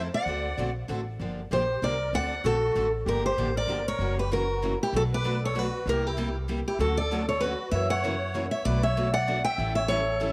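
A picked steel-string concert guitar carries the melody up front from 0.1 s, its fresh strings ringing bright with audible finger squeaks as it races through a fiery, virtuosic line in this acoustic string swing cut from a longer piece. The tune moves at 193 BPM in a swung 3/4 feel, opening in G minor and shifting to B minor at 4.9 s, where the harmony travels from Bm7 through C7 and Dmaj7 to a closing A7. Beneath it, two more picked steel-string guitars sit in the background as accompaniment: a full-bodied dreadnought and a boxy parlour guitar, both showing finger squeak. A musette accordion adds a second line with a reedy, shimmering wet tuning, while a pizzicato upright bass on gut strings stays up front with a woody, dark, thumpy pulse. Light reverb and studio ambience give the ensemble a natural sense of space.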